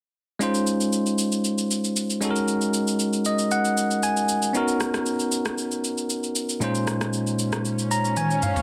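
A bell-like, bright tine electric piano opens this soulful amapiano excerpt at 0.4 s together with a smooth electronic R&B drum kit of rim clicks, shaker and toms, whose overdriven sound was re-recorded in a small room and sits up front with the piano. The chords move from Dbmaj7 through Gb69 and Cbmaj7 to Bbm11, and the piano adds fills at 3.0 s and again near the end. A background electronic swell enters at 7.5 s just before a short drum fill closes the dense, heavily limited mix under light reverb.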